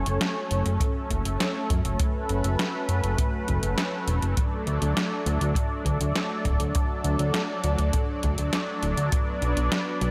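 Synthwave with a romantic, dreamy mood, cut from a longer piece, where a smooth, chorused analog pad holds sustained chords with a soft attack and sidechain pumping over a fat, tube-saturated analog bass, while a detuned, overdriven 8-bit drum machine supplies hi-hat and snare and a boomy acoustic kick drum enters at 0.8 seconds, all set in light small-room reverb as the harmony moves from F#m to D to Bm.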